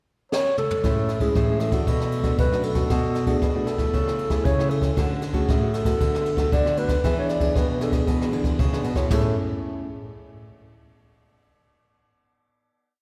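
A brushed drum fill with dark cymbals and a boomy kick opens this short, joyful samba-choro piece in A major at 116 BPM alongside a breathy, close-miked clarinet singing an intimate, scooped jazz melody with vibrato, before two fingerpicked nylon-string guitars enter at 0.8 seconds, one playing a samba bass figure and the other thumb bass with syncopated plucked chords, all bathed in a lush concert-hall reverb until the closing Amaj7 chord rings from 9.1 seconds.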